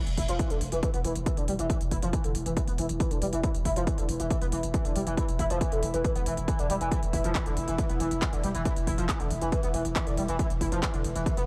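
A gritty, screaming synth lead opens this driving peak-time techno excerpt at 0.0 seconds, its saturated, guitar-like riff sitting up front with vibrato, ensemble chorus and tape echo, all pulled into a sidechain pump. Almost at once a growling 808-style bass enters on a low, buzzy note, shaped by tube saturation and a low-pass filter, its fast attack giving way to a decaying tail. A techno drum kit of handclaps and smooth hats joins alongside it, the hats and cymbals pumping with the sidechain, while a heavy, layered electronic kick sits up front with a tape-tinged weight from being re-recorded in a small room. From 1.0 seconds an evolving analog drone of sawtooth and pulse waves swells in slowly with chorus and long release, breathing under the lead. The mood is hypnotic and industrial, with the whole passage bathed in a digital ambience.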